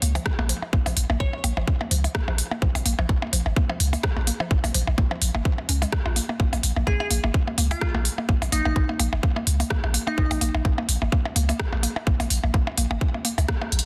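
A dry, dense and heavily limited mix opens this short cut from a longer minimal techno track in Bb minor, tuned to A4 = 437 Hz, running at 127 BPM in 4/4 with a 56% swing on the sixteenths. The mood is clinical and cool. An up-front electronic kick sits tight and tape-warm beside a garage drum kit of crisp hi-hats and rim clicks, with soft clipping on the snare, while electronic percussion blips trail through a digital delay. A deep, punchy sine sub bass with a pitch-drop attack pumps against the sidechain, and a woody, round FM pluck plays the riff with chorus, sidechain pumping and dub echo. A glassy, crystalline wavetable pluck carries the melody in brief appearances, first at 1.2 seconds and again from 6.9 to 10.7 seconds, its bright, ring-modulated tone coloured by chorus, cassette tape character and digital delay.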